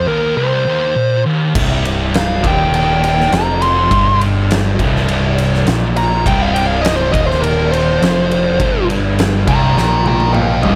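Stoner and doom metal that feels sludgy and heavy, opening with a short break where a dark, up-front fuzz lead guitar with slapback echo rides over a pair of thick fuzz guitars grinding a C minor riff in the background; at 1.6 seconds the lead turns into a solo as a very quiet, double-tracked, bright fuzz guitar, a growling overdriven picked bass and an oversized low-tuned drum kit crash in together, the kit gritty and up front with a fat snare, punchy kick and a pumping big-room sound, before a drum fill closes things at 9.8 seconds in a dry mix with little reverb.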